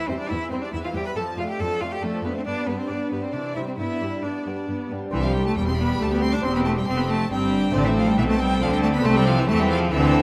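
In a straight triple metre, this festive, brilliant passage from a baroque-style concerto movement puts an intense solo cello up front with a smooth top, carrying the melody beside a rich, smooth violin section while a clear second violin line sits in the background. A delicate, fingerpicked gut-string lute and distant violas fill in the accompaniment, and a lush cello section with expressive portamento holds the bass, joined at 5.1 seconds by bowed double basses. Close, detailed microphones and light reverb give the ensemble an intimate chamber sound.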